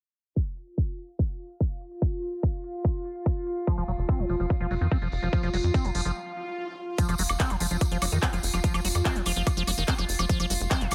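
Intense, psychedelic trance cut from a longer piece, where a punchy, overdriven kick and a crisp-hatted big-room kit of handclaps, hi-hat and woodblock open under a filter sweep, an evolving wavetable pad holds sustained F chords with chorus, phaser and sidechain pumping, and from around 3.7 seconds a squelchy, resonant acid bass riff with tape echo, a jingly tambourine and a tight, wave-folded sequencer bass join before a short break from 6.2 seconds and an electronic swell at 6.3 seconds launch the second section in a digital ambience.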